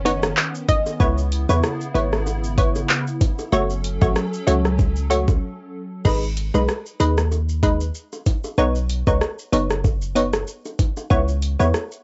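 A bouncy, sultry dancehall groove at 95 BPM in 4/4 with a light 16th-note swing, set in C# minor and cut from a longer piece. The electronic island pop drum kit sits up front, overdriven, with a knocking kick, metallic hats, handclaps, rim click, shaker and crash, while tight, high-tuned bongos tick along in the background. A deep, boomy 808-style bass anchors the low end beside crisp, detuned wavetable chord stabs with a bright, wave-folded bite, both running through the whole clip. A hollow, flute-like pad with a warbling, vintage tone holds soft chords under the first half until 6.0 seconds, and a round analog pluck flashes a brief melodic figure with chorus, tape echo and plate reverb in the opening second. The chords move from Badd9 through C#m7 and F#m, then to G#m after a short break at 5.4 seconds, with the lo-fi cassette sound dulling the top end into a hazy home-recorded feel.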